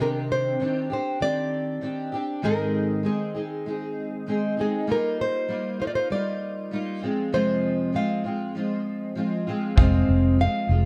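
A fingerpicked nylon-string guitar with fresh strings carries the melody up front over a double-tracked, fingerpicked steel-string acoustic guitar in this heartfelt, carefree acoustic pop excerpt at 98 BPM in 4/4. The guitars move through Cmadd9, Ab, Ebadd9/G and Fm, set in light reverb and small-room ambience within a dark production. At 9.8 s a clear, polished concert grand piano and a round, foam-muted vintage electric bass join, along with a brief, punchy, distant kick drum played with bundle sticks.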